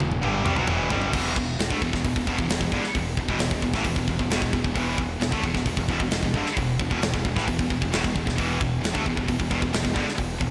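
A straight, driving 4/4 pulse carries this dark, relentless heavy metal clip, cut from a longer piece, opening with a drum fill over its first 1.1 seconds before the band settles onto a power-chord groove. The tight metal drum kit sits up front with a mid-forward, big-room acoustic sound, its medium-tuned snare and tight kick joined by crash, hi-hat and toms. Two picked electric guitars play the riff throughout: one bright and overdriven, the other a high-gain, distorted layer set further back in the mix. Beneath them, a growling picked electric bass adds an amped, overdriven edge from the background. The harmony moves from E minor to an E power chord at 1.1 seconds, and a lush hall reverb gives the whole band a big arena sound.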